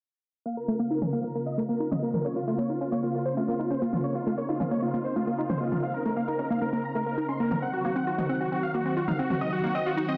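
A straight 4/4 pulse of layered electronic toms, re-recorded in a large room, runs from 1.0 to 9.4 seconds beneath this soaring, euphoric uplifting trance excerpt, where a huge, detuned supersaw lead carries the melody up front through a filter sweep and digital delay, a round analog pluck spins chorused, delayed arpeggios with its own filter sweep, and a silky, string-like analog pad holds slow-attack chords with ensemble chorus and vibrato over a Bbmadd9 that shifts to Cdim at 7.6 seconds, all in a dense, heavily limited mix with light digital ambience.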